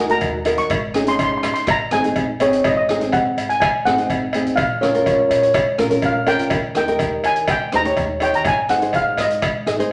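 A straight, bouncy calypso groove in common time sets a festive mood in this short cut from a longer piece. A shimmering, metallic lead steel pan carries the melody up front, struck with medium rubber sticks and heard in a boxy small-room sound. Close beside it, a small, fingerpicked nylon-string guitar supplies the accompaniment, while a woody pizzicato upright bass strung with steel sits low and soft in the mix. A street-band drum kit joins at 0.1 seconds with hi-hat, rim clicks and a boomy kick, its top rolled off and its placement mid-forward, and a metallic, small-room cowbell enters at 0.2 seconds to add percussion. The harmony moves from Ebm through suspended and added-ninth colours on Ab to Bbm and Eb, all set in a generous, wet studio reverb that gives the band a lively, roomy glow.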